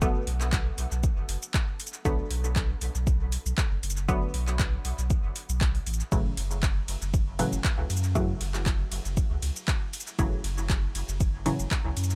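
A lightly swung 4/4 pulse at 118 BPM anchors this meditative, deep dub techno excerpt in B minor. An overdriven, up-front electronic kick plays alongside a deep house kit of handclaps, metallic hi-hats, ride cymbal and shaker, itself overdriven and trailed by dub echo. Beneath it a round sine sub bass pumps with the sidechain, while muted, detuned sawtooth chord stabs with a filter pluck shimmer through chorus, phaser and dub echo, moving from Bm7 to F#m7 at 6.1 seconds and ending at 11.6 seconds, all set in a digital ambience.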